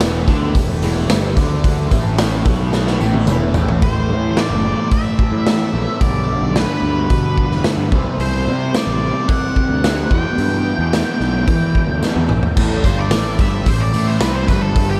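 A gritty, up-front garage drum kit with a punchy kick opens this trippy, hypnotic psychedelic rock excerpt, alongside a bright, double-tracked fuzz guitar riff, a round, overdriven picked bass, a faint jingly tambourine and a very quiet, buzzing, shimmering tanpura drone. The drums sit in a pumping stone room with a rolled-off top, and a fill leads into the next section. At 3.8 seconds a dark octave-fuzz lead guitar enters with delay, carrying the melody over chords that move from A minor through G and Csus2 back to E minor. The tanpura drops out at 9.7 seconds, and the tambourine returns shortly before that. After a second drum fill, the lead breaks into a solo at 12.6 seconds as the piece returns to A minor, all under a light reverb.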